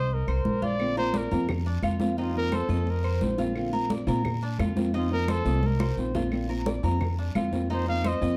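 Warm and sunny, this brief excerpt of Cuban son and guajira moves at a brisk 174 BPM in Bb major, with a clear, present trumpet carrying a solo melody with vibrato over the bright, metallic arpeggios of the double-strung tres and the warm fingerpicked accompaniment of a nylon-string guitar on old strings, which enters at 0.8 seconds. An up-front, woody pizzicato upright bass anchors the sway between F7sus4 and Bbadd9, while ringing, close congas drive the groove, with a drum fill at 5.6 seconds. Compressed claves sit in the background, and a raspy guiro adds its texture. The dark production is set in a moderate large-studio reverb.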